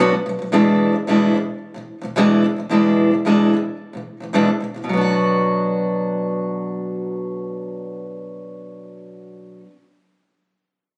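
Set in a straight, even 4/4, this short pop fragment, cut from a longer piece, has a reflective and tender mood. A single fingerpicked steel-string acoustic guitar carries the accompaniment from 0.0 to 9.8 seconds, sitting up front with a warm, concert-like tone and audible finger squeaks. The harmony moves from Bm to E7 and then settles back on Bm as a second section begins at 4.9 seconds. The sound was captured on a phone in a room with a studio ambience, a light reverb and compression.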